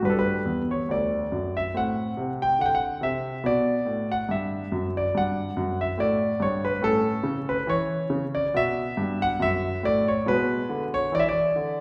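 A solo concert grand piano opens this serene, dance-like baroque-style suite movement, moving in an unhurried 4/4 at 70 BPM with a flexible rubato feel, tuned to A4 = 439 Hz. Its polished, intimate tone spans D2 to G5, with deep bass and clearly audible action noise, as the harmony moves from G5 through G and A toward B5 and an E7/B chord by 10.3 seconds. A wet recital-hall reverb, heard from further back in the room, surrounds the playing across this 11.8-second passage taken from a longer piece.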